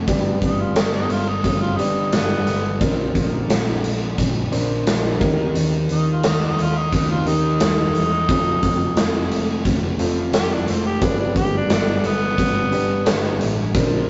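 Driving and swaggering, this classic rock excerpt moves at 88 BPM in a straight 4/4, cut from a longer piece and built on a chord path of G, Bbadd9, Eb, F and back to G. A raspy, gritty tenor saxophone takes the solo across nearly the whole clip, carrying the melody from the start until 13.4 seconds with a vintage pop-style edge. Behind it, an overdriven semi-hollow guitar and a sludgy distorted guitar play the riff in the background, while a reedy, overdriven electric piano, pushed through a combo amp, fills in accompaniment. A round, punchy hollow-body short-scale bass anchors the low end, and a big acoustic rock kit sits up front with a punchy kick, medium-tuned snare, hi-hat and tambourine. The whole take has the rough feel of a rehearsal room, with tube saturation, a moderate stone-room reverb and a dull top end.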